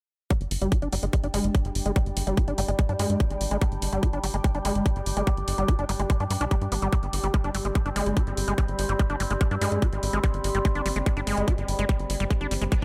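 Psychedelic trance at 145 BPM in G major, intense and hypnotic, cut from a longer piece, with a tight, up-front kick, bright small-room hats and a punchy, detuned sequencer bass driving from the start around 0.3 seconds. A squelchy, gritty acid bass riff with resonant filter sweeps, tape echo and sidechain pumping runs throughout over the G5 chord, while an overtone-sweeping ring-modulated drone enters at 0.9 seconds and a deep, moody pad with chorus and reverb joins at 1.5 seconds, both pumping in the background. A very quiet reverse cymbal lands at 12.8 seconds, all set in a digital ambience.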